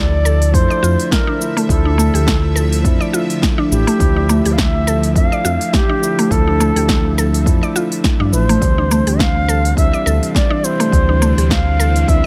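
A lightly swung 4/4 groove of layered electronic kick and deep house kit with punchy snare, smooth hats and shaker drives this meditative organic downtempo excerpt, where a sawtooth synth bass sits up front beneath a clean tine electric piano with sidechain pumping and delay, woody FM mallet plucks carry chorused arpeggios, a tense, detuned string-like drone with phaser enters in the background at 1.0 s, and an expressive cedar flute with crisp chiff and vibrato floats through delay and shimmer reverb.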